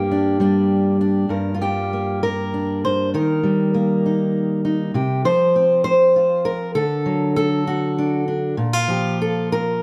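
Close, detailed microphones and a light reverb place a single fingerpicked steel-string acoustic guitar up front, its tone warm and acoustic with a concert polish. This is solo fingerstyle folk in six-eight metre with a straight feel, and the mood is melancholic and wistful. The guitar plays alone from 0.0 to 9.8 seconds, ranging from G2 up to C5. Its harmony moves from a minor opening through Eb, Csus4 and D before settling on Bb5 at 8.6 seconds. A brief opening phrase gives way to a longer passage from 1.3 seconds, and the piece is cut from a longer work.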